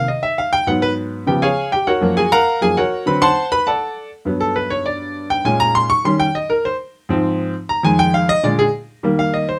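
Close, detailed microphones and light reverb frame this lively, sophisticated jazz fragment, cut from a longer piece, at 201 BPM in straight 4/4 and tuned to A4 = 439 Hz, where a clear, natural baby grand piano with a short sustain sits up front and plays solo from F2 to Db6 for 9.6 seconds, moving from a rootless Cm through Abm7, Db7, Gbmaj7, D7 and Gmaj7, then Bbm7, Eb7 and Ab6, before Fm7 and Bb7 arrive on Eb at 9.0 seconds.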